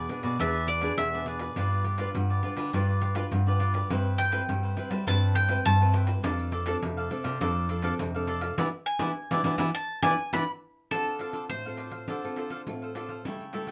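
A bright, double-strung bowl-back mandolin carries a picked solo melody up front from the opening of this bittersweet yet lively samba and choro at 103 BPM, set over a mellow, crisp cavaquinho, a full-bodied, fingerpicked classical nylon-string guitar also placed up front, and a second nylon-string guitar on bass with audible finger squeak, while a jingly, close and dry pandeiro played with soft hands sits in a moderate studio room; the band hits an accent from 8.6 seconds, the bass guitar drops out at 10.4 seconds, and the mandolin falls silent at 12.9 seconds.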